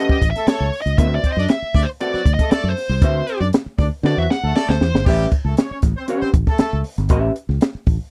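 Funky and energetic, this straight 118 BPM funk excerpt in 4/4 opens with a nasal, overdriven lead guitar solo through a parked wah over A9 and D13 chords, backed by a distant horn section with light vibrato, a dark, clean hollow-body jazz guitar, a round, punchy fingered bass and a compact cocktail drum kit with a high-tuned snare, whose fill from 4.0 to 5.1 seconds leads into a second section back on A9, all captured in a dry, close 1970s-style studio sound.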